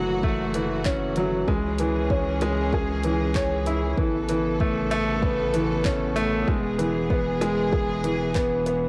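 A bright baby grand piano leads this melancholic, cinematic piano-and-strings electronica piece, playing an up-front riff with audible action noise and short sustain, treated with cassette tape and analog delay. Beneath it, a dark chamber string ensemble holds soft-attack sustained chords, bowed sul tasto with light vibrato and a smooth top, also carrying a cassette tape colour. A round analog bass, blending square and sine waves with wave-folding, sits low and mellow with tube saturation and sidechain pumping. An electronic kick drum enters at 0.2 seconds, and a deep house drum kit with handclaps and dark hi-hats follows at 0.5 seconds, sitting well back in the mix. The harmony moves from F#m7 to C#m, then Aadd9 and E. The short excerpt has the light reverb and intimate feel of a home cassette recording.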